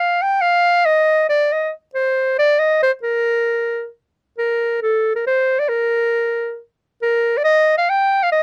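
Festive and jolly, this short excerpt of alpine folk music moves at 136 BPM in a lilting 3/4, with a gentle swing on the eighth notes and a home key of Bb major. A single bright clarinet carries the whole excerpt as a solo, playing in a classical style and sitting up front in the mix. Its line stays between A4 and G5 across the full 8.4 seconds. The tune falls into two short sections, the first running to 4.3 seconds and the second carrying on from there to the cut. The sound is dry and close, like a 1970s studio recording, with only a moderate booth ambience around the instrument.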